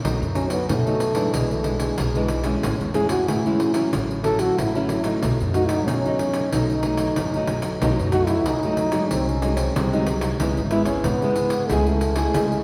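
Fingerpicked classical nylon-string guitar, woody, thumpy gut-string pizzicato upright bass and a jingly, saturated pandeiro played with soft hands open this playful, joyful samba-and-choro fragment at 93 BPM in a straight 4/4, before a breathy, present jazz-style trombone solo enters at 0.4 seconds with vibrato, scooped notes and a soft attack over chords moving from B7 through Amaj7 to C#m7, in the long, wet reverb of a church or concert hall.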